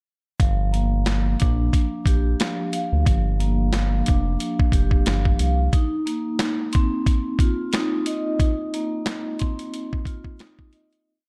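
Boom-bap hip-hop at 90 BPM in G minor, tough and moody, with a dark production and a swung 16th feel. A gritty, compressed sampler-style drum kit drives a hard kick and backbeat snare while a round, deep analog bass plays a looped line up front until 5.7 seconds, when the break leaves the drums and vibraphone. The soft-mallet vibraphone rings with a metallic, airy tone and slow motor vibrato, its pedal-note arpeggio in eighths repeating like a sampled loop through a cassette-tape filter over Gm7 and then F7sus4, before the piece fades out from 8.4 seconds.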